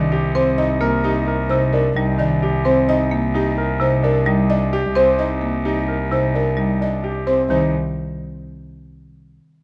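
A hypnotic, urgent stretch of minimalist classical pattern music in C minor, cut from a longer piece, opens with all four parts together at 130 BPM in a straight 5/4. A buzzing, mellow soft-mallet marimba carries the melody over a bright, percussive hard-mallet marimba accompaniment, while a clear concert grand plays arpeggios and a smooth bowed cello with vibrato sits up front on a low C2. Recorded close and detailed in a moderate scoring-stage reverb, the parts ring over Cm7 until all stop at 7.7 seconds, just after the harmony shifts to C minor at 7.5 seconds.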